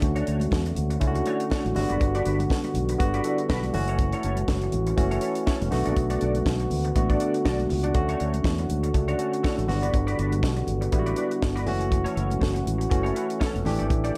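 An up-front, tight funk drum kit with a high-tuned snare drives this glamorous, danceable disco cut at 121 BPM with a light sixteenth-note swing, joined by punchy fingered electric bass, a barky tine electric piano, a twangy, compressed clean electric guitar with analog chorus, a mellow French horn section holding sustained chords in the background and very quiet, bright congas, all cycling through Dmaj7, Gmaj7, F#m7 and Bm7 before landing on A7sus4 at 13.7 seconds in a light studio reverb.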